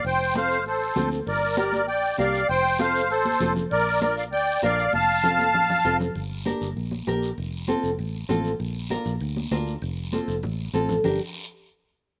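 A driving, danceable cumbia fragment opens with a reedy, shimmering musette accordion up front carrying the melody with a slapback echo until 6.0 seconds, over a round, foam-muted fingered electric bass, a raspy guiro, soft-handed high-tuned congas in the background and a bright fingerpicked nylon-string guitar, with drum fills at 4.9 and 10.1 seconds in a dry outdoor sound.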